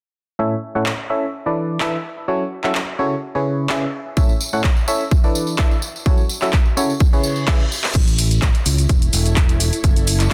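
A lightly swung 4/4 groove at 127 BPM drives this feel-good, euphoric piano house piece in A major, as an overdriven house kit of crash, handclaps, hi-hat and shaker arrives at 0.9 seconds, joined at 4.2 seconds by a punchy, up-front electronic kick and a close, acoustic tambourine. A biting, percussive FM electric piano carries the riff through chords of A, E7sus4, F#m7 and C#m7, its chorused, tape-coloured tone pumping and echoing under a long filter sweep that builds with a reverse cymbal and drum fill into the next section. At 7.9 seconds a bright, growly fingered bass enters, soon followed by a cloudy, detuned granular pad that drifts mellow and blurred beneath a dense, heavily limited mix with light reverb.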